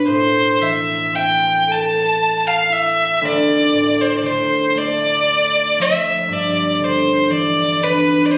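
Longing and haunting, this Celtic slow air unfolds in A minor at a very slow 39 BPM in 6/8, played with a free, rubato feel. A rich, focused fiddle carries the melody from B4 to A5, bowed by one player with light vibrato and set up front in a plate reverb. A concert harp accompanies underneath, thumb-plucked and ringing, its acoustic tone reaching from D2 to A4 and also sitting up front, a little softer than the fiddle. The harmony moves from Am to Dm and then to G6 at 6.3 seconds. Both parts play throughout this brief passage cut from a longer piece, which was captured on a phone in the room and given moderate studio reverb and compression.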